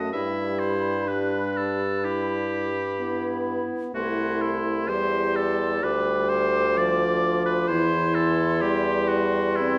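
A warm, up-front bassoon anchors this yearning, solemn slow romantic movement for wind quintet, cut from a longer piece and moving with a free, rubato feel in 4/4. Above it, a hollow, pure concert flute carries the close-miked melody with vibrato, while a bright oboe sings a second line and a clear French horn fills in the accompaniment. A distant clarinet joins at 0.1 s in the background, and the whole passage sits in the wet reverb of a recital hall as the harmony moves from Em/G to C, then G5/D and C/E.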